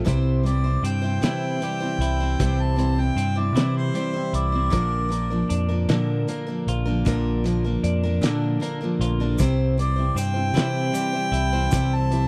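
Harmonica takes the lead in this excerpt of folk and heartland rock, its warm, distant, roomy tone carrying a solo line that enters at 0.5 seconds, pauses near 5.9 seconds, and returns at 9.8 seconds. Underneath, a picked steel-string acoustic guitar with a woody, full-bodied dreadnought sound sits up front, joined by the bright, twangy chime of a clean twelve-string electric guitar playing a riff that gives the track its jangly character. A picked electric bass, amped and up front, and a cloth-damped, thuddy drum kit with a fat snare, tight kick, hi-hat and a gritty, muffled, rolled-off top hold down a slow 6/8 pulse at 51 BPM. A soft, flute-like tonewheel organ with slow rotary chorus sounds very quietly at the start and again from 9.1 seconds, while a grainy tube shaker drifts in the background near the close. The harmony moves simply between C and Bb, and the dry, close, small-room production gives the whole piece an intimate 1970s studio feel.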